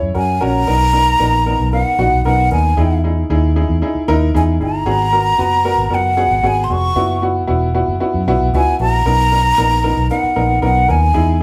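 A breathy, mellow silver concert flute carries the melody in this joyful, uptempo 1960s-style soul excerpt, entering at 0.2 seconds with a hollow, close-miked tone, vibrato and tongued notes sitting high in its register. Beneath it, a woody, slightly detuned upright piano supplies a boxy accompaniment in the middle range, while a vintage fingered electric bass adds a dark, round, foam-muted line with an amped character. All three parts sit up front, and the band sounds as though it is playing live in one room, wrapped in a wet studio reverb. The groove moves at 115 BPM in a straight 4/4 feel in B major. The harmony flows through Bmaj7, Emaj7, G#m7 and F#7sus4 before returning to Bmaj7 around 9.1 seconds, giving the passage a sunny, glowing warmth.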